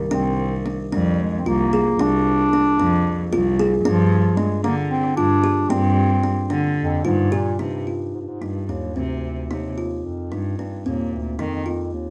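From 0.1 seconds a mellow bass clarinet, a kalimba and a cello sound together, opening this restless, urgent excerpt of contemporary chamber music in an uneven 7/8 metre, counted at 224 BPM in eighths with a straight feel in C minor. The bass clarinet carries the melody in a smooth, classical-style solo voice, while the kalimba's soft, woody fingertip plucks ring out in close, dry arpeggios with a hollow-box body. Beneath them a single bowed cello holds the bass line with a focused, vibrato-laden tone, all three parts sitting up front. The harmony moves from a rootless Bb over C to G7sus4, then shifts at 7.6 seconds into a new section on C minor add9, touching Eb sus2 before the cello drops away at 11.6 seconds. A moderate studio reverb places the trio a little further back in the room, giving the urgent pulse a warm, gently spacious frame.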